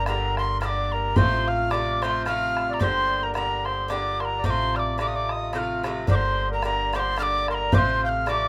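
Wild and driving, this Celtic folk waltz in 3/4 swings lightly as an airy metal tin whistle leads up front, expressive with tongued chiff, vibrato and lifted highs. A reedy, dry-tuned single-reed accordion carries a clear second line, while a picked, metallic double-strung Irish bouzouki and a woody, thumpy pizzicato upright bass on steel strings supply accompaniment over alternating Gm and F/A chords. A damped, tight bodhran keeps the pulse in a moderate small room throughout this short cut from a longer piece.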